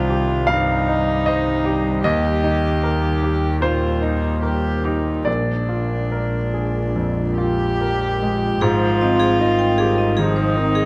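Intimate and hopeful, this short excerpt of rubato neoclassical piano and strings in Eb major, at 71-78 BPM, sets a clear, up-front concert grand with audible action noise over a rich bowed double bass, a floating sul tasto cello line and a moody detuned analog pad with chorus and phaser, until a dark viola and a metallic, ringing vibraphone with tape echo join at 8.6 seconds on an Abmaj7 chord, all in a close, detailed room with light reverb.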